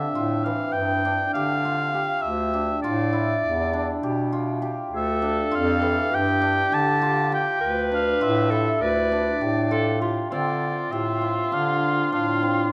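An uneven 9/8 pulse drives this hypnotic, restless contemporary chamber music, where a warm oboe with light vibrato carries the up-front melody over bright, shimmering hammered cimbalom arpeggios and a clear, roomy bass clarinet line, joined at 4.9 seconds by a punchy, forceful clarinet with a jazz-style, vintage edge on the second line, all captured by close, detailed microphones in a moderate recital-hall reverb before the harmony turns toward a new section near the end of this fragment cut from a longer piece.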